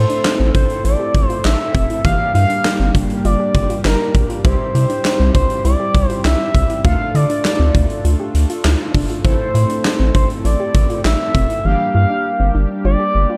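An expressive, smooth portamento lead with vibrato and chorus carries the melody up front in this nocturnal, driving synth-pop excerpt, over bold, brassy analog synth brass accompaniment, a soft round pluck playing echoing arpeggios in the background, a deep, nasal analog bass, and a punchy, big-room arena drum kit of kick, snare, hi-hat and handclaps that drops out at 11.6 seconds, all within a dark production with light reverb.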